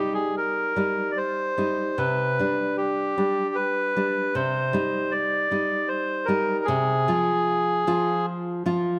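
A reedy, vintage-toned bandoneon carries the melody up front, its band-limited sound singing a yearning, melancholic line between G4 and D5. Beside it, a fingerpicked nylon-string guitar supplies warm classical accompaniment from C3 to F4, also placed close to the listener. This romantic duo moves in 3/4 at around 76 BPM with a rubato feel, in C minor, over harmony that shifts from Cm to G/C, back to Cm, and then to Fm/C. A moderate concert-hall reverb surrounds the pair with a sense of space. Cut from a longer piece, the passage lets the bandoneon fall silent at 8.3 s while the acoustic guitar carries on alone to the close at 9.0 s.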